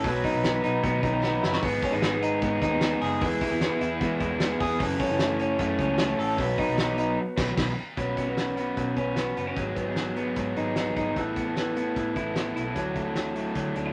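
A straight, steady four-beat pulse drives this breezy, nostalgic slice of jangly indie pop, cut from a longer piece. A loose indie drum kit sits distant and roomy, with a fat snare and tight kick working alongside hi-hat and crash, and it drops a short fill at 1.2 seconds. A vintage fingered electric bass plays throughout, dark, foam-muted, round and punchy. Up front, an electric guitar through a small old amp picks twangy, lo-fi arpeggios with a slightly broken-up edge, while a raw garage guitar adds warm, overdriven picked accompaniment. The full band hits an accent at 7.2 seconds before the harmony shifts at 8.0 seconds into suspended and added-ninth colours, all bathed in a moderate studio reverb.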